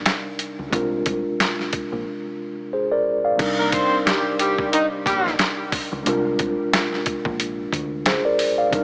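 Boom-bap hip-hop at 90 BPM with a swung 16th feel, tough and dark, cut from a longer piece and moving between Cm7 and Bb9. A mellow tine electric piano, filtered and tape-softened, opens at 0.0 seconds, followed by a gritty, pitched-down sampler drum kit with a thumpy kick and a medium-tuned snare, while a round, foam-muted fingered bass sits deep and lower in the mix. A warm jazz horn section adds filtered stabs with tape echo from 3.6 to 5.3 seconds, all within a light digital ambience and a small-speaker sound.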